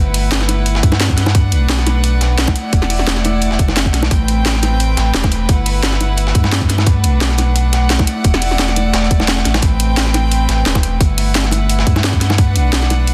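Liquid drum and bass at 174 BPM in A dorian, melancholic and rolling, with a bright, earthy chamber string section holding sustained chords that pump against the sidechain over a deep sine-and-triangle sub bass with octave, cycling through Gmaj13, Bm7, E9sus4 and Am9. An overdriven, tight electronic kick sits up front, dropping out briefly at 9.3 seconds, while a garage kit with a cracking overdriven snare layers over a gritty, tape-warm breakbeat sampler kit tucked in the background, its hats and snare high-pass filtered. Close, dry bongos played with hard hands add round, low-tuned accents, all set in a small room with light digital ambience and a dense, heavily limited modern master.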